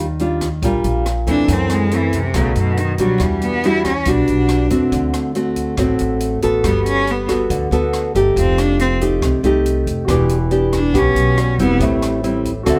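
A bright, fingerpicked nylon-string guitar and a woody pizzicato upright bass open this relaxed, sophisticated bossa nova, joined at once by an acoustic jazz kit with a boomy kick, hi-hat and rim click. From 1.3 seconds a clear, focused bowed cello carries the melody up front with vibrato over lush extended chords, while a warm concert grand piano slips in quietly in the background at 10.0 seconds. Light reverb gives the passage, cut from a longer piece, a natural studio-room feel.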